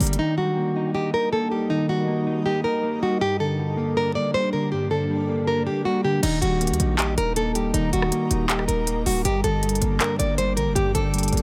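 This half-time trap and hip hop excerpt at 159 BPM feels menacing and melancholic, as an up-front, fingerpicked classical nylon-string guitar carries the melody over a dark, clean electric guitar accompaniment, while a cloudy, detuned granular pad sustains blurred chords in the background over an Eb to Gm progression. The crisp electronic trap kit, with hi-hat, handclaps, rim click and crash cymbal, and a punchy, heavy 808-style bass with a fast attack hit briefly at the start, drop out, and return at 6.2 s to drive the rest of the passage. The mix is dry, with the pad's own reverb giving it a soft haze.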